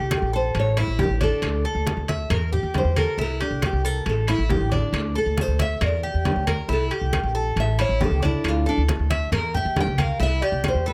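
Warm and nostalgic, this short Cuban son and guajira excerpt at 137 BPM features a fingerpicked classical nylon-string guitar soloing throughout over metallic, double-strung tres arpeggios and a thumpy, up-front pizzicato upright bass, while bright, hard-hand congas, ringing saturated timbales, tight high-tuned bongos and woody claves in the background fill out the close, dry sound, with a drum fill at 4.7 seconds.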